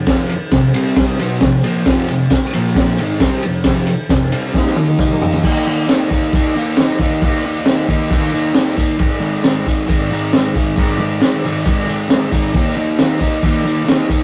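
A rough rehearsal-room recording with light reverb and saturation frames this menacing, gritty garage rock excerpt in straight 4/4. A thick, double-tracked fuzz guitar plays the riff up front through F5, Bb5, Fm and Ab5 chords, joined almost at once by a crunchy, punchy breakbeat kit with a high-tuned snare, dark cymbals and toms, whose fill from 4.5 to 5.4 s leads into the second section. A jingly tambourine enters at 2.3 s, close but low in the mix.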